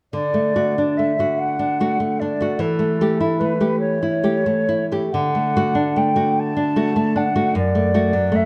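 Serene and warm, this short fragment of a romantic duo for concert flute and classical guitar moves at a slow 48 beats per minute in 6/8, its beats uneven and pulled by rubato in D major. The flute carries the melody between A4 and A5, its tone airy and mellow with vibrato and a crisp attack, heard at a slight distance. Up front, the nylon-string guitar supplies fingerpicked classical accompaniment ranging from F#2 to G4, sitting a touch louder than the flute. Both instruments play together from 0.1 to 8.5 seconds over a calm progression from D to A7/E and back to D, settling on D/F#. A moderate recital-hall reverb and a dark, warm production give the pair an intimate, softly glowing setting.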